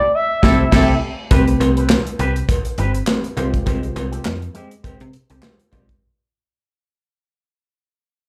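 A swung sixteenth-note groove in 4/4 drives this short cut of early-eighties boogie funk, danceable and feel-good, heard as a live gig through the venue's PA with club reverb. It opens on a band accent, with a dark, sawtooth portamento lead carrying the melody up front with vibrato, chorus, slapback echo and plate reverb until 1.0 seconds, while a tight, vintage horn section adds a brief second line in the background. From 0.4 seconds a punchy acoustic drum kit with bright cymbals, handclaps, hi-hat, kick and snare sits up front beside a snappy, metallic FM slap bass. A worn, slightly out-of-tune tine electric piano plays the accompaniment through its built-in speakers, and a twangy, fingered guitar riff runs through an envelope filter with lush chorus. At 1.3 seconds a distant cowbell joins as the music begins to fade out.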